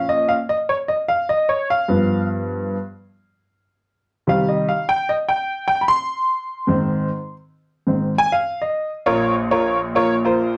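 A clear, woody upright piano plays alone throughout this short soul excerpt, its slightly detuned, worn tone sitting up front with long sustain and a slapback echo, ranging from Bb1 to C6. At 100 BPM in a straight 4/4 in Bb dorian, the mood is urgent and passionate, the harmony moving from Bbm through G7, Cm and Ab before returning to Bbm at 9.1 seconds as a new section begins. The production is dark, set in a moderate studio reverb.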